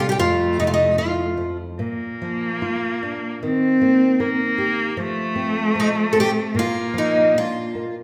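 A bright, shimmering picked twelve-string acoustic guitar carries the octave-doubled melody up front, sounding at the opening until 1.6 seconds and returning at 5.8 seconds in this longing, mournful fado-style ballad in Bb major, taken at 75 BPM in 2/4 with an uneven, rubato feel. A single bowed cello sings a rich, expressive second line with vibrato, soft attacks and portamento. Beneath them, a full-bodied, deep classical nylon-string guitar fingerpicks the accompaniment through F, Bb, Eb, F and Bb, all set in a recital hall reverb.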